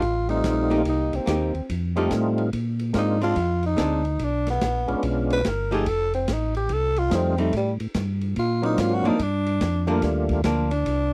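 Bluesy and greasy, this short cut from a longer soul jazz organ trio piece swings along at 144 BPM in 4/4, with a dry, close sound in the manner of a 1970s studio. A growling tenor saxophone takes the solo from the very start, its tone breathy and raspy with subtone and vibrato, sitting up front over changes that move from F9 through Bdim7 and D7alt to Gm7. Beneath it, a mellow, round tonewheel organ carries the bass line, clean and dark, colored by chorus vibrato and a slow rotary speaker. A second tonewheel organ part enters at 0.3 seconds with a lightly overdriven, percussive voice and second-harmonic percussion, also turning through a slow rotary speaker, while a picked hollow-body archtop guitar joins at 0.7 seconds with clean, electric accompaniment. The acoustic drum kit, heard lower in the balance, rounds things out with dark cymbals, a medium-tuned snare, a boomy kick and a rolled-off top in a small-room sound.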